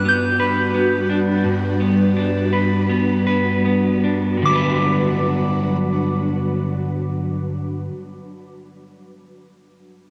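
A slightly broken-up electric guitar stands out most, picking dark arpeggios up front through lush chorus and tape echo from the start until 8.1 s. This is a dreamy, blissful dream pop excerpt in G major and 4/4 with a straight feel, moving at 76-88 BPM and slowing down over its first 4.4 seconds. An ethereal, full-bodied pad of detuned sawtooth and triangle tones with a noise layer holds sustained chords up front alongside it, its slow attack and long release shaded by ensemble chorus, built-in reverb and phaser. High above, a soft FM synth bell with a pure, mellow, decaying tone carries the melody, treated with chorus and tape echo. The harmony opens on Gmaj7, and the passage shifts into a second section at 4.4 s. Everything sits in a huge ambient reverb with the worn, warbling pitch drift of old cassette tape, and the clip is cut from a longer piece.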